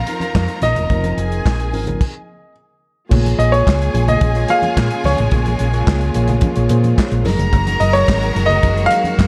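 Disco in a glamorous, danceable mood, cut from a longer piece, with an up-front baby grand piano carrying the melody over a lush, distant violin section, a mellow tine electric piano heard through its built-in speakers, focused background strings holding chords, a dry, dark soul drum kit with handclaps and a tight kick, low-tuned ringing congas and a round, punchy hollow-body bass, set in a small room and marked by a stop from 2.0 to 3.1 seconds before the Bbm7 passage begins.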